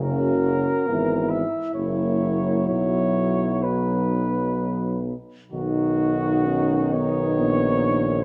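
Melancholic and elegiac, this slow, rubato hymn-like classical piece for brass band in 3/4 and B major moves at 60-72 BPM, with a dark, distant cornet carrying the melody up front over a clear French horn section's second line in the background, a mellow euphonium and a soft-attacked trombone in accompaniment, and a vintage-toned tuba anchoring the bass, all with light vibrato in a lightly reverberant, dark production.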